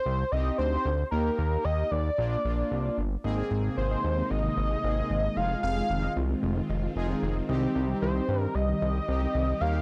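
In straight 4/4 at 113 BPM, this wistful yet upbeat synth-pop excerpt opens with a bold, nasal octave-doubled lead carrying the melody up front with chorus and vibrato, over a fat, detuned analog bass and brassy sawtooth synth brass accompaniment. At 3.2 seconds the harmony turns from Cm, Eb and Bb to Abadd9 and Fm7. A vintage, warbling string machine on violas enters there with ensemble chorus, alongside a soft, round pluck playing arpeggios through analog delay in the background. The dry, gritty recording carries transformer saturation and light reverb.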